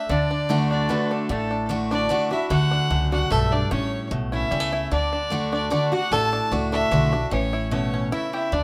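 A clear, bowed fiddle carries the melody high above the band in this joyful, driving bluegrass fragment in triple time, its nasal, earthy tone softened by light vibrato and a smooth top. A fingerpicked banjo shares the melody lower down with a twangy, percussive bite, while a lap resonator guitar played with slide adds a bright, metallic second line. From 0.1 seconds, the most up-front part is a jumbo steel-string acoustic guitar, picked with fresh strings, giving a full-bodied accompaniment complete with finger squeak. A pizzicato upright bass anchors the bottom with a woody, growly, thumpy sound. The harmony moves between D and A, and a moderate small-room ambience gives the whole ensemble a close feel.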